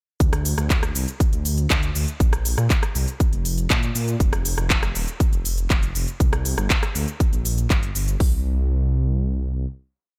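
This brief progressive house piece moves at 120 BPM in a straight 4/4, driven by a punchy four-on-the-floor kick with crisp open hats from a house drum kit that runs from 0.2 to 8.3 seconds. A second layer of programmed drums fills in the groove with shaker, closed and open hats, rim click and a handclap backbeat, both kits sitting up front in a small room reverb. Underneath, a dark detuned saw bass rumbles in a dotted rhythm between Eb1 and Bb2, its deep, beating unison tone pumping through sidechain compression. The whole span from 0.2 to 8.2 seconds is a drop, after which the drums fall away and the bass holds a final note until 9.7 seconds, leaving a digital ambience to hang in the air. The mood is bittersweet and dreamy, with a slightly off-standard tuning of A4 = 439 Hz.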